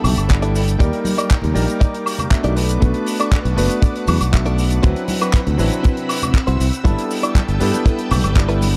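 A steady, straight 4/4 groove at 119 BPM drives this sunny, feel-good nu-disco excerpt in G major. A tight, dry kick sits up front from 0.3 s alongside a punchy fingered bass, while a damped 70s kit with hi-hat, handclaps, cabasa and woodblock and soft-handed congas fill out the pulse. A clangy vintage electric grand piano with dub echo and sidechain pumping carries the accompaniment. A lush sawtooth string machine with phaser and ensemble chorus holds slow-attack chords in the background, and a clean, picked, direct electric guitar riff with analog chorus and dub echo adds sparkle over a dark, lightly reverberant mix moving through G6/9, Ebmaj7, Bm7 and D13.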